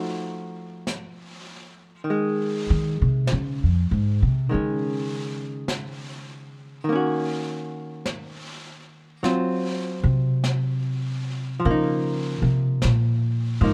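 A slow swung 4/4 at 50 BPM, with eighth notes swung at 66%, sets the pace for this smoky, intimate jazz ballad excerpt, tuned slightly low to A4 = 439 Hz. A clean, picked hollow-body archtop guitar, miked and amplified and placed up front, opens on an F7b9 chord during a brief break, and a vintage brush kit joins at 0.9 seconds, its medium-tuned snare and hi-hat sitting in a small room with a rolled-off top. The pizzicato upright bass enters at 2.7 seconds as the featured soloist, woody and close with steel strings, ranging from F2 to Eb3 and standing as the loudest part. Beneath it the guitar comps through Dbsus2, Ebm7 and Csus4 before resting on a Db69, while the brushes stay quietly in the background. The production is dark and warm with little reverb, giving the trio a dry, late-night closeness.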